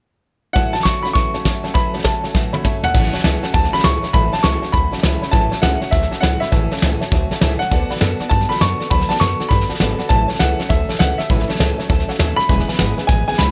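Light reverb sits over this short section cut from a longer rockabilly piece, and the soft brush kit, recorded in a studio room, sits up front with a fat snare and punchy kick alongside crash cymbal, hi-hat and toms. The mood is upbeat and rowdy, with a swung eighth-note feel. A bright upright piano carries the melody, brilliant and intimate with audible action noise, short sustain and a plate reverb. A detuned, jangly honky-tonk upright piano with a vintage character and its own plate reverb sits in the background, while a boxy, picked steel-string acoustic guitar fills out the accompaniment. At 2.3 seconds the drums and the honky-tonk piano both play fills, and at 2.9 seconds a dark, woody pizzicato upright bass with gut strings enters with a thumpy tone.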